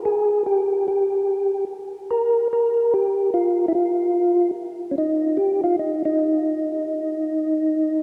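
A percussive tonewheel organ opens the excerpt almost at once and plays alone through to 8.0 seconds, carrying a late-night, soulful jazz line with a swung lilt in four. Its tone is soft and flute-like, clean and mellow, with a percussive second-harmonic attack on each note that gives the melody a gentle pluck. A slow rotary speaker and chorus vibrato add a gently shimmering movement to the sound, and the organ sits up front in the mix. The line stays in a compact middle register, from Db4 to Bb4. Around it, a cathedral-like reverb with a long decay fills the space, giving the passage the resonant air of a church or concert hall.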